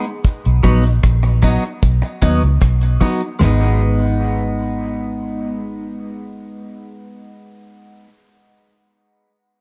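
A straight 4/4 dub reggae groove, spacious and hypnotic, rests on a dry, damped 70s drum kit with a fat snare and tight kick that stops at 3.6 seconds, while a round, punchy, foam-muted fingered bass sits up front, a clean, scooped electric guitar treated with phaser and dub echo plays accompaniment, and a distant cabasa with its own dub echo lingers in the background, all set in a dark production with light small-room reverb.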